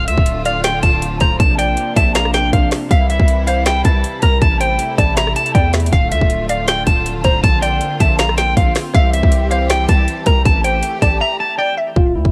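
Trap-flavored hip hop in D minor, this brooding, dark excerpt runs at 159 BPM with a half-time feel and cycles through Dm, Bbadd9, C and Am7 twice. An electric guitar at the edge of break-up carries the melody up front, its twangy, fingered tone softened by a low-pass filter and given a worn cassette-tape color and tape echo. Behind it, a glassy wavetable pluck plays a second line in the background, crystalline and nasal with a detuned, chorused shimmer and tape echo. A clear symphonic string section holds lush, bowed chords with smooth vibrato, while a hard-hitting 808-style bass supplies punchy, heavy sine lows with a fast attack. The trap drum kit sits up front with a hard-clipped kick, woody snare, metallic hi-hats, rim clicks and finger snaps, all colored by cassette tape. The dry, home-cassette sound has little reverb, and a break arrives at 11.2 seconds before the hi-hats drop out at 12.0 seconds.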